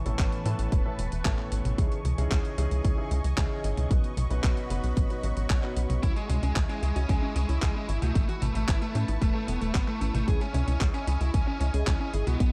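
Italo disco at 113 BPM in C# minor, this bittersweet, danceable excerpt runs on a straight 4/4 pulse with a dark, warm production and a digital ambience. A punchy, layered electronic kick sits up front alongside a tight, driving sequencer bass of sawtooth and square-wave tones with a fast, decaying filter pluck, while a dusty, sampler-style soul kit adds gritty, tape-flavoured handclaps, hi-hat and toms. Underneath, a lush, thick unison pad holds sustained chords with a slow attack and long release, coloured by chorus and phaser, moving through Aadd9, C#madd9 and Badd9. A clear, present grand piano plays stabs with long sustain and digital delay until 6.0 seconds, when a distorted, bluesy lead guitar enters with the melody, playing picked notes through delay. At the same point a detuned unison pluck enters in the background, playing arpeggios with a short decay, a noise layer, a filter sweep and a moving notch, echoed by digital delay.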